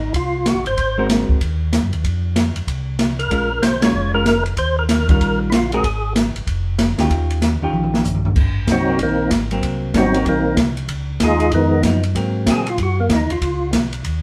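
A swinging 4/4 at 190 BPM drives this greasy, soulful soul jazz organ trio excerpt in Ab mixolydian, where a fat, lightly overdriven percussive tonewheel organ with slow rotary speaker and chorus vibrato carries the melody in bursts before taking a solo from 8.4 seconds, over a round, mellow tonewheel organ bass line, an airy, up-front acoustic drum kit with dark cymbals and a boomy kick that plays a fill at 7.7 seconds, and a clean, picked hollow-body electric guitar comping from 1.0 seconds, all captured live in one room with moderate reverb.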